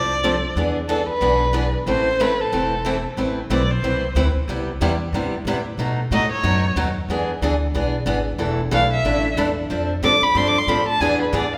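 Acoustic string swing in the jazz manouche style, this fiery A minor excerpt moves at 184 BPM with a swinging 4/4 feel and a minor progression that turns through F6, E7 and Am. Up front, a rich, expressive bowed violin carries the melody with vibrato and portamento, taking a solo from 3.2 s, while a boxy picked steel-string acoustic guitar supplies the accompaniment. A woody, thumpy pizzicato upright bass anchors the low end, and the whole recording sits in the wet reverb of a church or concert hall.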